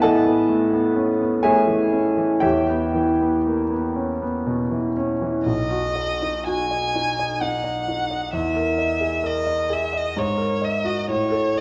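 In a rubato 3/4 at 58-66 BPM, this dreamy, luminous impressionist classical excerpt in B major, tuned to A4 = 435 Hz, opens with an intimate, polished concert grand piano alone, its deep bass and audible action noise up front, before a focused, distant bowed violin with vibrato takes the melody at 5.5 s over chords moving from Aadd9 and Em6 through Emaj7#11 and G#9sus4, the duo set in a recital hall's wet reverb with a dark production.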